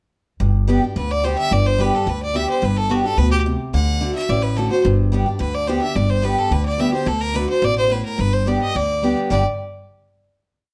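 A picked acoustic archtop guitar and a plucked upright bass open this brief, joyful bluegrass piece together at 0.4 seconds, the guitar alternating bass notes with strums and adding bass runs while the bass plays a thumpy two-beat root-and-fifth pattern on gut strings. The fiddle comes in at 1.0 seconds with an intense, clear fiddle tune in running eighth notes, bowed by a single player with light vibrato. The woody bass carries the low end, the guitar has a warm archtop tone, and all three instruments sit up front in a lively, straight-feel groove. The harmony moves between G and D throughout the short section. It closes on a final chord at 9.3 seconds, with light reverb giving the small group a touch of room.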